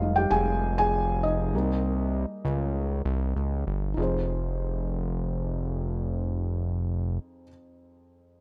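A felt-muted upright piano, soft and intimate with audible action noise and a plate-reverb sheen, carries this earnest, bittersweet pop excerpt in F minor at 98 BPM, moving from Fm7 to Cm7 and back over a fat, detuned, saturated sawtooth analog bass with a filter pluck that sits up front until 7.2 seconds, in a rough home demo mix with light reverb.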